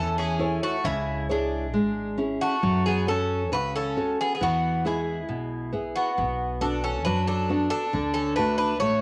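Greek folk music from a bouzouki band, this short excerpt cut from a longer piece moves at 135 BPM in a straight 4/4 with a bright, joyful mood. A picked bouzouki carries the melody up front, its double strings ringing metallic with some octave-doubled courses, while a second bouzouki plays a lower line with a brighter, tape-tinged edge. A fingerpicked nylon-string guitar in classical style sits up front as accompaniment, also colored by cassette tape, and a pizzicato upright bass on steel strings supplies a woody, growly, thumpy low end. All four parts play throughout the 9 seconds over a chord movement from A through C#m, F#m, E and Bm to D. The home cassette recording places the band in a small room with moderate spring reverb, giving the sound an intimate, homespun character.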